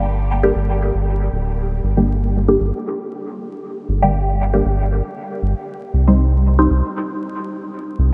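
Muted, detuned dub chord stabs with phaser and dub echo drift under a filter sweep until 6.8 seconds, moving from G minor to C minor at 5.7 seconds, while a round, ring-modulated analog bass sits deep and up front in this cavernous, meditative dub techno fragment at 117 BPM with a light sixteenth-note swing, all soaked in huge ambient reverb and vinyl crackle.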